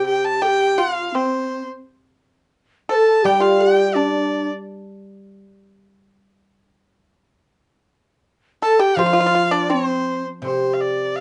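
In a rubato 2/4 around 84 BPM, this graceful, festive piece of Chinese traditional chamber music in C zhi mode sets a clear, earthy erhu melody with light vibrato and portamento up front, alongside a breathy, mellow, unsteady bamboo xiao second line, a dry, percussive pipa played with fingerpicks, and a silvery, ringing guzheng accompaniment that carries on alone from 4.5 to 5.4 seconds. The erhu, xiao and pipa return near 8.6 seconds and the guzheng near 9.0 seconds, all in a small, dark-toned room.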